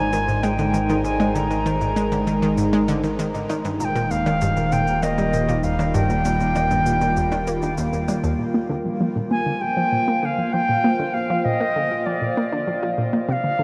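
Ambient, sequencer-driven space music at 98 BPM in 4/4, expansive and hypnotic, cut from a longer piece and steeped in a huge, wet reverb and the warbling pitch drift of worn cassette tape. An airy, up-front wooden flute carries the melody with a crisp attack through analog delay, over a mellow, morphing wavetable pad with chorus and phaser, a detuned sawtooth pluck riff, a deep, dark analog bass, and a faint cabasa with electronic percussion blips. Chords move from Abadd9 to Eb and then to Bb at 8.4 seconds, where the bass and percussion drop out, a filter sweep moves across the synth arpeggio, and a barely audible bubbling, resonant texture surfaces at 13.1 seconds.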